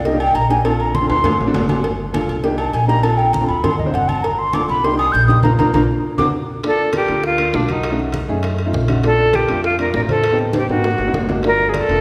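A brisk straight 4/4 at 200 BPM drives this sultry, sophisticated Afro-Cuban jazz excerpt in G minor, with background congas, tight high-tuned cowbell and bongos, and distant ringing agogo bells and timbales under a growly, woody pizzicato upright bass and a boxy upright piano with short sustain. A breathy, mellow concert flute with expressive vibrato carries a solo through the opening 6.6 seconds, a drum fill and a band accent from 5.4 to 6.6 seconds lead into a new section, and an airy, reedy jazz flute with soft attack takes the melody up front from 6.7 seconds. A wet hall reverb surrounds the ensemble as the harmony moves through minor sevenths, major sevenths and ninth chords back to Gm7.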